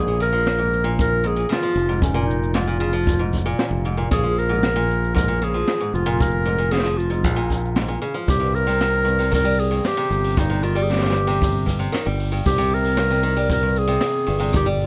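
This intimate, wistful folktronica piece, cut from a longer work, opens with a soft-attack clarinet carrying the melody up front, colored by a digital delay, alongside a boxy old ladder-braced acoustic guitar picking arpeggios and a bright, growly fingered electric bass. At 115 BPM in a straight 4/4 and set in Bb dorian, the clarinet sings in a classical style between Db4 and Bb4 while the guitar's arpeggios sit low, from G2 to G3. A brushed jazz kit joins at 0.2 seconds with cabasa, hi-hat and a medium-tuned snare, and a boomy acoustic kick, also played with brushes, comes in at 1.0 seconds. The harmony rests on Bb7(no3) before moving to C5 at 8.3 seconds. The drums have a natural studio-room sound, the bass is direct and up front, and a light studio reverb gives the whole mix a gentle sense of space.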